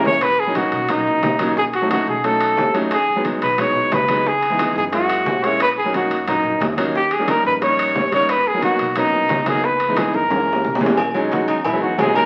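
Driven by a straight, danceable Afro-Cuban jazz groove, this lively fragment pairs an up-front trumpet with light vibrato and scooped notes and a clear, long-sustaining concert grand piano, backed by a woody, thumpy pizzicato upright bass in the background, ringing metal-shell timbales with agogo bells, very quiet round bongos with cowbell, and soft-handed low congas, all steeped in large studio reverb and old 78 rpm crackle, with a drum fill at 10.0 seconds leading into a trumpet solo from 11.0 seconds.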